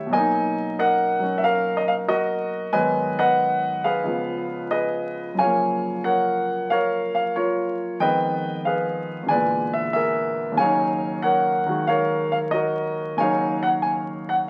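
The recording carries the crackle and aged surface of a very old 78 rpm record, with a moderate reverb that suggests a large studio around the instrument. Within that worn frame sits a solo concert grand piano, clear and natural in tone, placed up front with a deep bass that reaches down to Db2 while its range extends up to Ab5. This is moody solo jazz in 4/4, swung on the eighth notes yet played with a rubato looseness that lets the time breathe. The harmony moves from Bmaj7 through Abm7, Db7 and Gbmaj7, then darkens through Fm7b5 and E7#11 before settling on Ebm9 at 10.6 seconds. The piano plays alone for the full 14.5 seconds of this fragment, which is cut from a longer piece.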